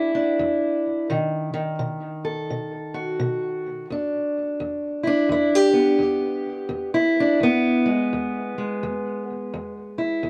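A dark, boxy sound in a moderate studio room frames this gritty, rollicking acoustic country blues excerpt at 85 BPM in E mixolydian with a swung feel, where a lone fingerpicked steel-string parlour guitar sits up front with a touch of analog delay, moving from a third-less E7 to B7 at 1.1 seconds and back to E7 at 3.9 seconds as it spans E2 to A4 across its 10.3 seconds.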